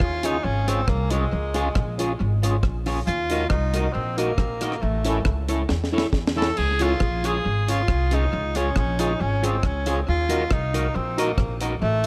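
A lightly swung 137 BPM ska groove in Db major, cut from a longer piece, bounces along upbeat on a deep, dry reggae drum kit with a high-tuned snare, tight kick and tape echo that breaks into a fill at 5.7 seconds, a woody, thumpy pizzicato upright bass, a dark, slightly broken-up fingered electric guitar with tape echo, and a fat, lightly overdriven tonewheel organ stabbing in the background through chorus vibrato and a slow rotary speaker, while an intimate, whispered tenor saxophone with soft attack and vibrato carries the tape-echoed melody up front in light reverb.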